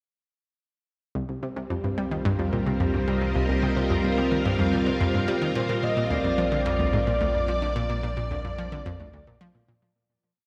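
A steady, straight 4/4 pulse at 109 BPM comes from a detuned analog pluck repeating a 16-step sequence low in the register, its fast attack and bright, chorused edge thrown back by tape echo. This whole piece of ambient, sequencer-driven space music in C minor feels mysterious and hypnotic. Vintage string machine chords in full ensemble swell in from 1.1 seconds with a slow attack, lush and up front, bathed in ensemble chorus and shimmer reverb. Beneath them, a round, deep analog bass with a slightly nasal tone holds sustained root notes as the harmony moves from C minor to Bb. At 5.6 seconds a breathy, flute-like synth lead enters with short arching motifs, softened by vibrato, tremolo, subtle chorus, shimmer reverb and tape echo, before the whole track fades out from 7.0 seconds within a wet concert-hall space.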